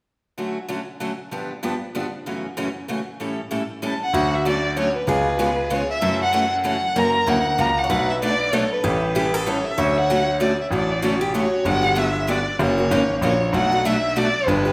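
Set in the moderate reverb of a church or concert hall, this playful, swinging jazz manouche piece in 3/4 opens with a boxy, picked parlour steel-string guitar carrying the accompaniment. From 4.1 s a brilliant grand piano with short sustain holds the bass, while a second picked acoustic guitar adds a bright upper line until 11.6 s. Above them a single bowed violin, rich and expressive with vibrato and portamento, carries the melody from 3.9 s, sounding distant yet up front.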